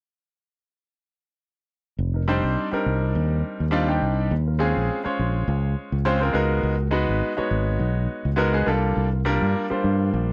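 A round, punchy fingered electric bass sits up front from 2.0 seconds, anchoring a driving, slick jazz groove in F minor at 103 BPM with a light sixteenth-note swing. A brilliant, intimate grand piano, its action noise audible, comps through F13sus4, Eb13sus4, Db13sus4 and C13sus4 and adds a fill at 5.8 seconds. The dry, close sound recalls a 1970s studio, and this short cut comes from a longer piece.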